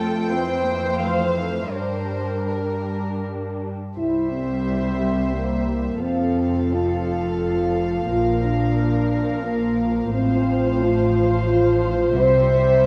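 Cinematic, hopeful and tender in a rubato 3/4, a pure, floating violin section carries the melody over a lush, woody second violin line, dark background violas and soft-attack cellos, each bowed sul tasto, until at 4.0 s a mellow, tight French horn section adds sustained chords and an intimate chamber double bass section joins the bass, the whole heard in a moderate scoring-stage reverb.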